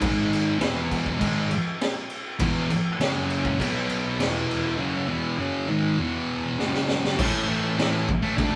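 A live, one-room garage recording with moderate studio reverb, this raw, rowdy cut from a longer piece sits in a straight 4/4. A thick, bright, double-tracked fuzz guitar sits up front playing a picked, distorted riff that spans E2 to D4, while a saturated, gritty drum kit with a boomy kick, high-tuned snare, crash cymbal and rolled-off top pushes alongside it. A drum fill at 6.6 seconds leads into a new section at 7.2 seconds, and the guitar continues until 8.6 seconds.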